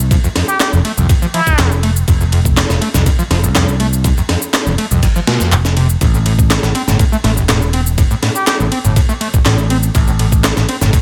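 Set in a digital ambience, this energetic, swaggering breakbeat fragment from a longer piece moves at 122 BPM in a straight 4/4, shifting from an F5 to an A5 chord at 6.0 seconds. A gritty, compressed sampler-style kit with a thumpy kick, high-tuned snare and ride sits up front beside an overdriven analog drum machine's handclaps, ride and shaker, while a growly, picked electric bass anchors the low end and a squelchy, screaming sawtooth acid riff carries distortion, a resonant filter sweep and lush chorus. A plunger-muted trumpet adds brilliant wah-wah jazz phrases with light vibrato from 0.5 to 1.7 seconds and again briefly at 8.4 seconds, colored by AM radio tone, vintage 12-bit sampler grit and dub echo.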